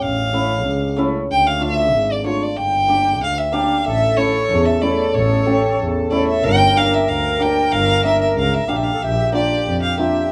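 Bittersweet and soulful, this short klezmer passage, cut from a longer piece, moves in a straight 2/4 feel through chords of A, D minor, G minor and B-flat. A clear, biting violin carries the melody up front, its focused bowed tone shaded with vibrato, while a muted double bass, bowed con sordino, sits beneath with a veiled, dark sound, sliding between notes with portamento and vibrato. A hammered dulcimer enters at 0.3 seconds with shimmering, ringing accompaniment. At 3.9 seconds the music moves into a new section and a reedy, sweet accordion joins as a second line, its light tremolo tuning lending a smooth color. The moderate studio ambience gives the ensemble a natural room sound.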